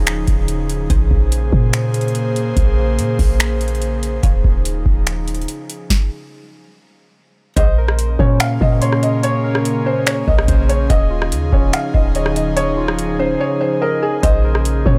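A dry, close-sounding mix frames this spacious, ethereal cloud-rap hip hop excerpt in a half-time feel, where a booming analog drum machine sits up front with a deep kick, crisp snare, metallic hats, finger snaps and rim clicks over a clean, boomy 808-style bass and an airy, breathy pad with chorus and sidechain pumping. A lute-like buff-stop harpsichord plucks quietly in the background as the chords move between Eb9sus4 and Bbm9, and the beat stops at 5.9 seconds. At 7.6 seconds a felt-muted upright piano enters with an intimate melody, its action noise audible through the delay, joined by round, gentle electric-piano-like synth arpeggios with chorus and delay, while the drums drop out briefly at 13.4 seconds.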